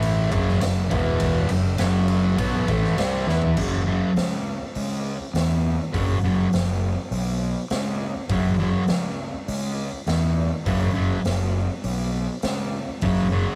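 Rowdy and raw, this garage rock excerpt stomps along at 102 BPM in a straight 4/4, with a double-tracked fuzz guitar riff pushed up front, its picked, compressed tone bright and distorted, over a punchy, overdriven fingered bass. The gritty acoustic drum kit sits back in a pumping stone room, its punchy kick and medium-tuned snare saturated and rolled off on top, and a drum fill at 3.3 s kicks the band into a new section at 3.6 s. The whole thing has the rough feel of a rehearsal-room take, with a short, wet booth ambience and warm saturation.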